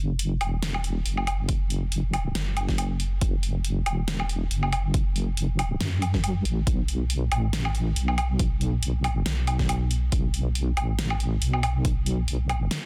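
A deep, soft wobble bass leads this brooding, dark dubstep excerpt from the very start, its sawtooth-and-sine tone sustained, compressed and thickened with chorus as it sits up front between E1 and F#2. At 139 BPM in a half-time 4/4 feel with a light 16th-note swing, a tape-warm house drum kit of hi-hat, woodblock and a fat, softly clipped snare enters at 0.2 seconds, and a punchy, layered electronic kick joins at 1.5 seconds. The sound is dry and close, with a dense, heavily limited modern master.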